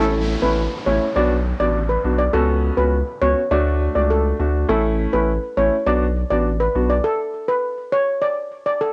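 A straight dancehall pulse in four drives this short cut from a longer piece, and its mood is tough and hypnotic. Out front, a steel pan carries the melody with a metallic, shimmering tone struck with medium rubber sticks, colored by cassette tape. Beneath it a baby grand piano, also treated with cassette tape, gives a present accompaniment over a deep, thick, saturated sine sub bass with a fast attack and sustained notes. An electronic downlifter sweeps through the opening until 4.7 seconds, while the chords move from A through B minor, a suspended chord and D before returning to A and B minor. At 7.0 seconds the harmony drops out and the bass and piano stop, leaving the steel pan alone until 8.9 seconds, all within a lightly reverberant, home-cassette sound.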